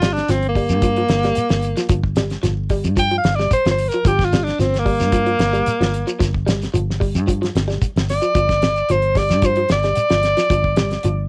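A bright, punchy alto saxophone takes an up-front solo with vibrato over a single Gm7 chord in this funky, defiant afrobeat excerpt, backed by a dry, damped 70s drum kit with a fat snare and tight kick, a dark, round, foam-muted fingered bass, slightly broken-up guitar arpeggios through a small old amp with a cassette-tape tint, and a grainy shekere sitting in the background, all in a lightly reverberant home recording on cassette.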